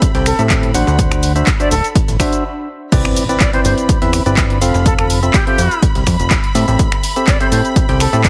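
Euphoric and feel-good, this piano house excerpt rides a punchy, up-front electronic kick, a tape-warm analog drum machine with cabasa, finger snaps, handclaps, crash and hi-hat, and a very quiet, gritty breakbeat kit, all under a hollow, chorused organ stab riff with tape echo, a funky sawtooth bass with a filter sweep and sidechain pumping, a lush violin section in the background, and an airy, bright flute melody, until a brief stop at 2.4 seconds gives way to a drop at 2.9 seconds marked by a very quiet electronic impact.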